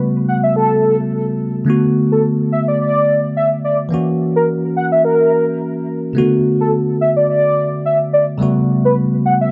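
Afrobeats at 107 BPM in B minor, this sultry, smooth fragment of a longer piece moves in 4/4 with a gently swung sixteenth-note feel. A bell-like tine electric piano carries the accompaniment from the start, its bright, clean tone sitting direct and up front, coloured by a phaser. At 0.3 seconds a velvety synth lead enters with the melody, a mellow, detuned unison voice with a fast attack, sustained notes and vibrato, thickened by chorus and tape echo. The harmony drifts through A13, Bm7 and F#7 before a second section at 6.2 seconds returns to Bm7 and A13. Light reverb surrounds the pair, and the whole recording carries the worn, warbling pitch drift of old cassette tape.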